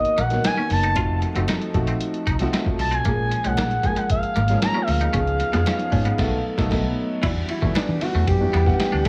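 A smooth, chorused sawtooth lead with vibrato and portamento glides over a dark, worn grand piano with audible action noise in this breezy, glossy 1980s jazz-funk pop excerpt at 115 BPM, backed by muffled, pitched-down sampler-style drums with gated reverb, while a round, foam-muted fingered bass, a clean, twangy picked electric guitar riff and very quiet damped congas join at 0.2 seconds, and the band hits an accent from 6.2 to 7.2 seconds.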